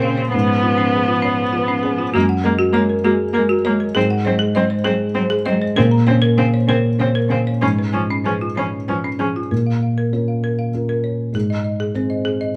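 This melancholic, fragile neoclassical excerpt opens with all four parts together in a rubato 3/4: a felt-muted upright piano, soft and dark with audible action noise, sits up front beside a clear, focused solo viola with vibrato, while a rich, distant cello carries a second line in the background and a woody, dry folk marimba struck with hard mallets spins rustic arpeggios. The strings stop at 9.3 s as the harmony settles from Db7/Ab through Gbadd9, Ab7 and Bbmadd9 toward Bbm. The piano and marimba carry on alone to the close, all heard as a band playing live in one room with moderate large studio reverb.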